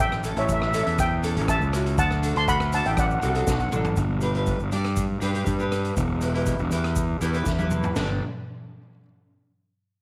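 Calypso full of festive, carefree spirit, opening with a shimmering, mellow steel pan melody played with soft rubber sticks that drops out at 3.7 seconds, over a growly, overdriven fuzz bass up front, a dark, boomy street-band drum kit with a high-tuned snare and fills at 3.5 and 7.5 seconds, a grainy egg shaker in the background, and a double-tracked, fingerpicked nylon-string guitar that adds its own fill at 7.0 seconds, all in a light, small-room ambience, as the chords move from A7 and D7 to G and Em.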